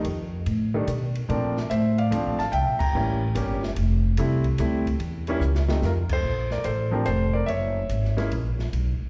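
A sophisticated jazz piano trio swings in 3/4 at 145 BPM, opening together with a concert grand carrying the melody with deep bass and a slapback echo, a woody pizzicato upright bass up front, and a dark, smooth drum kit with a boomy kick and dark cymbals, moving through chords like Bbmaj9 and rootless C7b9 to a band accent at 2.7 seconds and a drum fill at 5.4 seconds before a turn toward Gb7, all heard as a live gig through the venue's PA with recital hall reverb in a short passage cut from a longer piece.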